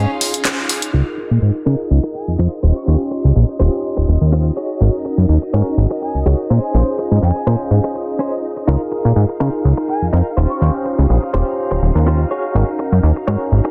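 A sunny, joyful filtered disco house cut opens on a bell-like tine electric piano, a swirling phased string machine, a twangy clean electric guitar riff and a plucky, funky analog bass that sits up front, all in Db major at 124 BPM with a lightly swung 16th feel. A punchy, tape-warm drum machine with handclaps and hi-hat, joined by a very quiet tambourine, plays only from 0.2 to 0.9 seconds, with a band accent at 0.5 seconds. The electric piano carries phaser and low-pass filtering, the guitar adds tremolo, and the string machine's chorused, sawtooth chords bring vintage 12-bit grit. From 2.1 seconds a breathy concert flute with a soft attack drifts in the background, its delayed, filtered phrases returning between 6.0 and 10.7 seconds. A rootless Bbm9 and Eb13, Ab7sus4 and Db69 chords cycle under a light reverb, and the master is dense and heavily limited.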